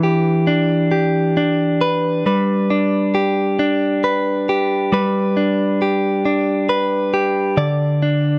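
A dark, lightly reverberant mix frames this short, aching and dramatic pop fragment in a slow 6/8 at 45 BPM, where a lone clean electric guitar, recorded direct, picked, compressed and placed up front, spans D3 to D5 over Em7, shifts to G at 2.3 seconds and drops its chords at 7.6 seconds before the fragment ends at 8.4 seconds.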